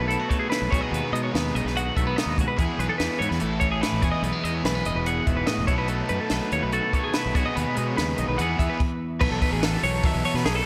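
Up front, a bright, twangy twelve-string electric guitar picks out an accompaniment with slapback echo while a second twelve-string spins arpeggios in the background, joined by a biting, double-tracked overdriven guitar riff, a fuzzy fingered bass and a dry cocktail kit with a punchy kick and high-tuned snare, in this wistful, playful math rock and midwest emo excerpt at 145 BPM, moving through chords like B7sus4, Amaj7 and G#m7/B in a lush hall reverb with a big arena sound, before a stop at 8.8 seconds gives way to a new section on B9sus4 at 9.2 seconds.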